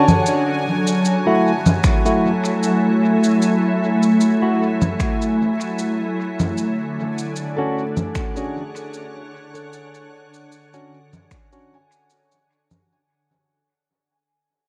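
Ambient dub with a deep, hazy mood, cut from a longer piece and fading out almost from the start, drifting from F#m7 to Dmaj7 under vinyl crackle in an echo-heavy mix with a moderate plate reverb. A calm, pure organ-like pad holds sustained chords up front with ensemble chorus, while a barky tine electric piano played through a combo amp adds stabs in dub echo, and a concert harp rings fingerpicked arpeggios in the background, dropping out after 2.0 seconds and returning at 7.6 seconds. Up front, electronic congas, shaker and finger snaps carry a gentle swing, joined at 1.8 seconds by a punchy layered kick, as a resonant sawtooth texture bubbles through random filter steps in the distance.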